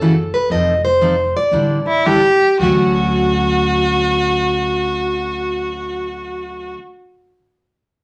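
The recording sits in a wet studio reverb with a short tail, giving this brief cut from a longer acoustic string swing piece in the jazz manouche style a charming, lively glow. A picked, plugged-in steel-string acoustic guitar carries the melody up front, its tone dark and boxy like a parlour instrument. A jumbo steel-string acoustic guitar plays the accompaniment, full-bodied with audible finger squeak. An upright bass played pizzicato on gut strings adds a woody, thumpy low end well beneath the guitars. The opening moves through F#m7, F7 and A7sus4 while slowing down. A bowed violin enters at 1.9 seconds with a second line, warm, smooth, even and nasal with vibrato, and the harmony settles onto Dmaj7 as a new passage begins at 2.6 seconds.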